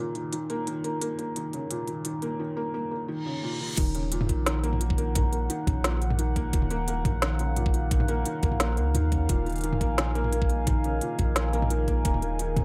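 A soft, felt-muted upright piano with audible action noise plays arpeggios through a digital delay, opening on an Ebmadd9 chord at the start of this heavy, spacious half-time drum and bass piece in Eb minor at 174 BPM. It is joined by an up-front, overdriven electronic drum kit with a woody snare and crisp, filtered hats, before a reverse cymbal leads into the drop at 3.8 s, where a deep, sine-toned 808-style bass and a knocking, tape-warm layered kick arrive, followed at 4.4 s by a moody sawtooth pad with chorus, phaser and sidechain pumping holding sustained chords, all set in a light digital ambience.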